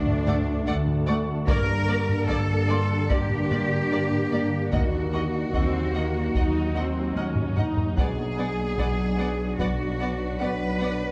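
Cinematic hybrid orchestral and electronic film score, relentless and futuristic, cut from a longer piece, where a heavy-stick taiko ensemble in a live room drives the music alongside deep, bowed double basses and lush cellos with vibrato, punctuated by a drum fill from 7.2 to 8.0 seconds. Behind them sit a dark, roomy French horn section holding sustained chords, a swarming, detuned granular drone with its own reverb, and a vintage grand piano treated with digital delay. From 0.3 seconds, a focused, distant studio violin section carries the melody over a smooth second violin line and even violas, all set back in a moderate scoring-stage reverb with a dark production.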